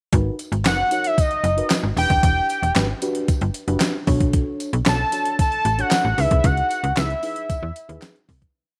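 Early-eighties boogie funk with a funky, danceable mood, built on a thumpy, overdriven 8-bit drum machine whose snare is layered with handclaps, a snappy, metallic slap-like FM bass line full of syncopation and chromatic approach notes, and a jingly tambourine on the backbeat in the background. A soft, round FM electric piano, treated with chorus and phaser, plays dark, rootless chord stabs over minor ninth harmony, while a fat, detuned sawtooth lead with vibrato, filter sweeps and slapback echo enters at 0.7 seconds with call-like motifs. The whole piece sits in a light reverb and begins fading out at 6.4 seconds.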